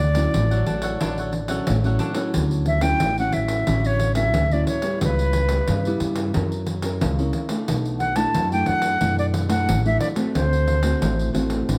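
Bathed in light reverb, this joyful, playful samba and choro piece moves at 90 BPM in D major, with an airy, reedy silver concert flute carrying the up-front, tongued melody through tape echo until 11.3 s, a crisp, picked cavaquinho heard only for the first 2.3 s, a dark, fingerpicked nylon-string guitar, a woody, growly pizzicato upright bass up front, and a jingly pandeiro struck with hard hands, all over chords that travel from Dmaj9 through F#7 and Bm7 to D7.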